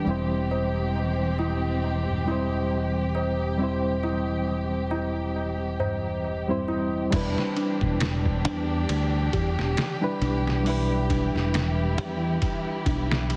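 Hypnotic and melancholic, this trip hop excerpt moves at a slow 68 BPM in E minor, with a lightly swung sixteenth-note feel. A reedy, lightly overdriven electric piano carries the accompaniment through its built-in speakers, colored by tremolo and tape echo. Beneath it a studio string section holds bowed chords with vibrato and portamento, while a delicate, bell-like celesta plays arpeggios in the background through 12-bit sampler grit and delay. A bright, up-front fingered electric bass anchors the low end throughout. For the opening 7.1 seconds a high-tuned, ringing tabla sounds distant in a large room over a C/E chord. At 7.1 seconds the harmony moves to Em7 and a pitched-down, muffled sampler-style drum kit takes over, with a thumpy kick, medium-tuned snare, hi-hat, ride and crash in studio reverb, all within a heavily compressed, radio-like mix with light reverb.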